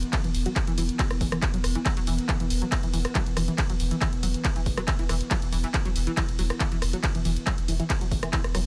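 A straight 4/4 pulse at 139 BPM drives this dark peak-time techno fragment, cut from a longer piece and holding on E5, with a punchy, layered electronic kick that carries a small-room character, alongside a tape-warm analog drum machine supplying handclaps, rim clicks, and hi-hat and ride cymbal that pump under sidechain. Beneath it, a deep, thick triangle-wave sub bass sits on E1 with overdrive, a low-pass filter and sidechain pumping, while a tight, evolving sequenced synth riff of detuned sawtooth and pulse waves moves between E3 and F#3, its filter pluck and moving notch coloured by chorus, tube saturation, cassette tape, digital delay and pumping. An eerie, metallic FM drone with a slow attack and long release hovers between E3 and B3 in chorus and built-in reverb, also pumping, all set in a digital ambience.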